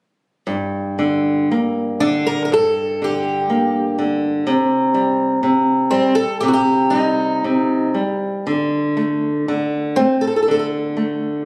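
This short excerpt, cut from a longer piece, opens at 0.5 seconds with a fingerpicked flamenco guitar laying down low accompaniment in a fado-style ballad in G minor. The pace is a slow, rubato 60 BPM in 2/4, and the mood is passionate and mournful. At 2.0 seconds a fingerpicked twelve-string acoustic guitar takes up the melody, its shimmering, octave-doubled tone sitting up front beside the flamenco guitar. The harmony moves from Gm to Cm and settles on D5 at 8.5 seconds, with the melody ending at 10.7 seconds just before the accompaniment stops. Both guitars bloom in a reverberant recital-hall space with added club reverb and compression, captured on a phone in the room.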